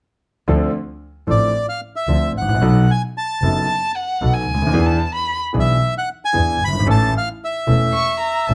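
A reedy, dark bandoneon carries the melody from 1.3 seconds in this tense, dramatic tango excerpt at 112 BPM with a rubato feel, over a brilliant, up-front concert grand piano and a softly bowed sul tasto double bass with an airy, intimate tone, while a violin with vibrato and portamento adds an expressive second line from 3.7 seconds, all moving through Dm7, B7, E7 and A in a close, detailed recording with light reverb.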